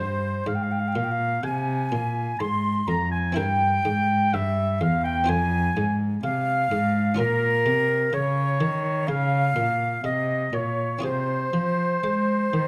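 Heard through close, detailed microphones in a moderate recital hall, this flowing, grave baroque-style sonata fragment sets an airy, crisp wooden flute melody alongside a distant, warm oboe second line, while a muted, lute-like buff-stop harpsichord supplies dry accompaniment and a dark, gut-string cello with light vibrato sits up front on the bass.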